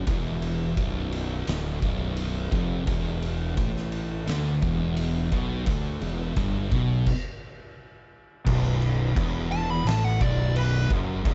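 A dark, lightly reverberant production carries this brooding, ominous stoner and doom metal excerpt at 86 BPM in B minor, where two thick fuzz guitars grind out the riff in the background under a bright, overdriven fingered bass and a saturated, gritty, oversized low-tuned drum kit up front with a fat snare and punchy kick in a pumping stone room, before the band halts at 7.1 seconds, a double-tracked raw garage guitar joins at 8.5 seconds, and a compressed fuzz lead guitar with wah flashes a brief high melody from 9.5 seconds.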